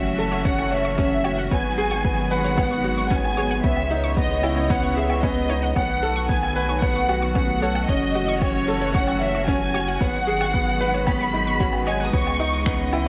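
An intimate, moving 13-second excerpt of piano and strings electronica at 113 BPM in C# minor, where a lush, up-front violin section carries the melody over dark, veiled con sordino strings, a felt-muted upright piano riff with audible action noise, a round analog bass and a background analog pluck arpeggio, both with sidechain pumping and the pluck also bearing chorus and tape echo, while an overdriven electronic kick and a soft brush kit with finger snaps, hi-hat and woodblock drive the F#m7, G#m7, C#m9, B7 progression in light small-room ambience.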